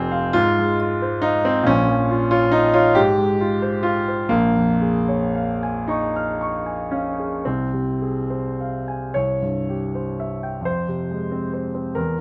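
Wistful and mournful, this short piece of a longer romantic nocturne for solo piano unfolds in F minor at a slow 34-47 BPM, counted in dotted quarters within a 6/8 metre and shaped by generous rubato. A grand piano carries everything from 0.0 to 12.2 seconds, ranging from F1 up to F6, its tone natural and up front with a long, lingering sustain. The harmony rocks between F minor over A-flat and B-flat minor before settling on F minor over C, leaning into a C chord at 9.1 seconds and resolving to F minor at 10.7 seconds as a new section begins. Close, detailed microphones capture the instrument intimately, while light reverb adds a gentle halo of space. The tuning sits slightly below standard pitch, at A4 = 439 Hz.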